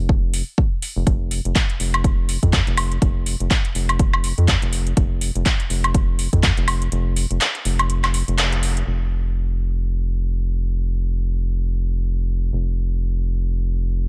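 Smooth and deep, this deep house fragment moves with a swung 16th-note feel, built on a round, dark analog bass that pulses with sidechain pumping and a plucky filtered attack. A punchy, tape-warm electronic kick and an up-front house kit of handclaps, metallic hi-hats and woodblock drive the groove, all set in a digital ambience. The kick drops away before a band accent at 8.4 seconds, and from 8.9 seconds the bass carries on alone until the cut at 14.1 seconds.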